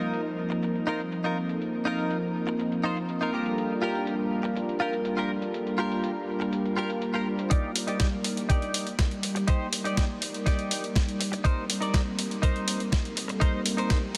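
A straight 4/4 groove at 122 BPM sets gritty, compressed sampler-style hi-hat and snare, both dulled by low-pass filtering, beneath pad and guitar from the very start, until a thumpy electronic kick joins up front at 7.5 seconds and drives a build-up through this feel-good, sunny nu-disco excerpt. A smooth, detuned sawtooth pad with a slow attack carries the chords from F7sus4 through Gm7, Ebmaj7 and Cm7, its chorus, sidechain pumping and filter sweeps set against a twangy, scooped clean electric guitar riff, bright and picked, that sits forward in the mix with analog chorus and ambient delay. A huge, wet reverb with an 8.6-second decay soaks the whole mix in a dreamy haze.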